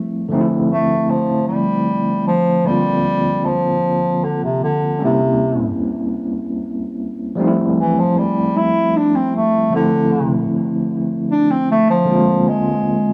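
Sultry and yearning, this short R&B excerpt in D minor moves in a slow 6/8 at 51 BPM, with a barky, gritty overdriven tine electric piano carrying the accompaniment through a medium tremolo and plate reverb from the opening. A bass clarinet enters at 0.7 seconds to take the melody as a solo, its distant, roomy tone and classical phrasing colored by plate reverb and tape echo. Rich extended chords such as Dm9, C7b9 and Fmaj9 pass beneath it in a moderate studio room.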